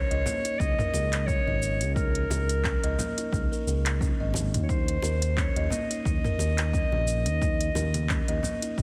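A vintage-toned solo clarinet carries the melody in this mystical, meditative organic downtempo excerpt at 88 BPM with a swung 16th-note feel, its line soaked in tape echo over a buzzing, woody kalimba playing arpeggios through the same echo. An up-front, mellow synth bass with vibrato and ring modulation pumps with sidechain compression, alongside an overdriven, punchy electronic kick that arrives at 0.6 s, while an electronic kit of handclaps, smooth hi-hat, shaker and toms joins ringing congas and bongos set in the background. The harmony moves from Db5 to Eb5 at 4.7 s, and the sound is dense and heavily limited, with light reverb and small-room ambience.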